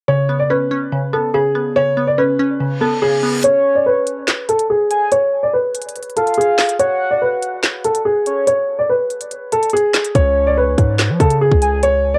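Lightly reverberant, cassette-tinged home-recording sound frames this cold, tense half-time drill cut at 143 BPM, where a dark, woody, slightly detuned upright piano carries the melody through a low-pass filter and analog delay, a glassy, crystalline wavetable pluck accompanies it from the start, and a brief reverse cymbal leads into 3.4 s, where a soft, round octave-layered synth lead with vibrato and a crisp drill kit of hats, snare and handclaps enter as the piano takes a filter sweep, the hard-clipped kick held back until a punchy, heavy 808-style bass arrives at 10.2 s.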